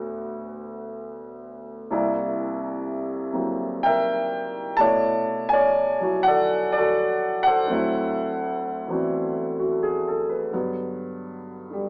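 Solo jazz piano, moody and cool, in a brief passage cut from a longer piece. A warm grand piano plays alone for the full 11.9 seconds, swinging its eighth notes while also bending the time freely in a rubato feel. Its sound is natural and up front, spanning a broad register from deep bass notes to the upper middle of the keyboard. The harmony drifts through rich extended chords, starting on D6, passing through C9, Bm11 and D13, and settling on Gmaj7 near 10.5 seconds. A moderate studio ambience surrounds the instrument, and the recording has a live, small-speaker character.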